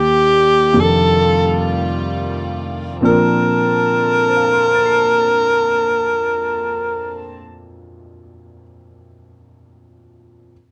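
A slow swung 4/4 at 48-59 BPM, easing back in its opening 3.0 seconds, carries this romantic, tender jazz ballad fragment in Bb major, moving from Ebmaj7 and F13 to a resting Bbmaj9. A bright, up-front alto saxophone sings the solo melody between G4 and Bb4 with vibrato, subtone and scooped notes, while a natural-sounding grand piano accompanies across a broad range, and a distant, floating chamber string section holds soft-attack bowed chords until both horn and strings stop at 7.4 seconds. The piano plays on alone to 10.5 seconds, and the close, detailed sound carries little reverb.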